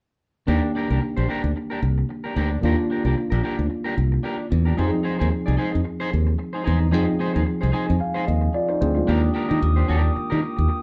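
A danceable, driving disco cut opens at 0.5 s with a growly, punchy fingered bass up front, a worn and slightly out-of-tune tine electric piano, and a twangy, slightly broken-up electric guitar, all riding a light swing over an Ebmaj7 to Fm7 progression. The electric piano plays a fill from 7.5 s, and at 9.1 s a glassy, ethereal glass harmonica enters with slow-attack sustained chords as the harmony returns to Ebmaj7. The band sounds like it is playing live in one room, with a short, wet studio reverb and some lossy compression artefacts.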